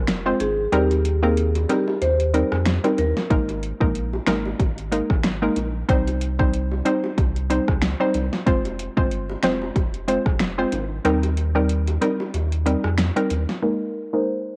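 A bouncy, hypnotic dancehall groove at 93 BPM in F minor, swung on the 16ths, sets punchy, overdriven pop drums of finger snaps, metallic hats, rim clicks and a fat snare (the kick muted from 0.7 to 3.3 seconds and again from 11.0) and tight, high-tuned bongos in the background over a deep, thick saturated sub bass, while a hollow, detuned square pluck with chorus and sidechain pumping carries the Fm, Eb6, Absus2 and Cm chords and a warm marimba melody with tape echo appears at the start and returns at 13.6 seconds, all with a cassette-tape home-recording grit and light reverb.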